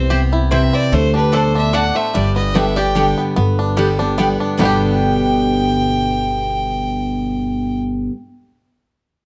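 Virtuosic and lively, this bluegrass piece in 3/4 at 147 BPM in G major swings its eighths as a clear, biting fiddle with light vibrato carries the melody through plate reverb, a metallic, nasal lap resonator guitar played with slide and fingerpicks adds a second line in the background, a bright, full-bodied picked dreadnought sits up front with the accompaniment, a twangy, percussive banjo plays arpeggios, a woody pizzicato upright bass holds the low end, and a round, double-strung mandolin adds stabs from the background over chords moving from C to D to G, captured with close, detailed microphones and light reverb.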